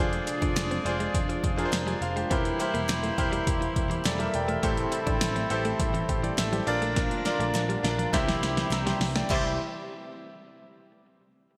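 A brilliant, up-front concert grand piano accompanies this nostalgic, uplifting 1980s-style pop passage at 103 BPM in C mixolydian, moving through Fm6, C7/E, Am7, Bb and C over a punchy kick, fat snare, dark hi-hats, crash and tambourine from an electronic drum kit bathed in gated reverb, with a drum fill from 7.0 to 9.3 seconds. A round, foam-muted picked bass anchors the low end, while a clean, compressed electric guitar riff with subtle chorus and delay, distant horn stabs with light vibrato, and a slow-attack, detuned sawtooth pad treated with chorus and phaser sit further back. Hollow group handclaps are barely audible, and the whole bright digital production is steeped in a wet plate reverb.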